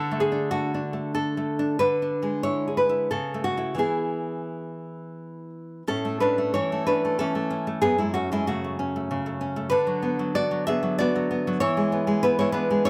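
A bright, fingerpicked nylon-string guitar plays alone and up front in this short, nostalgic and sunny romantic classical excerpt, moving in a rubato 3/4 from an opening phrase into a second section at 5.9 seconds, captured by close, detailed microphones with a touch of light reverb.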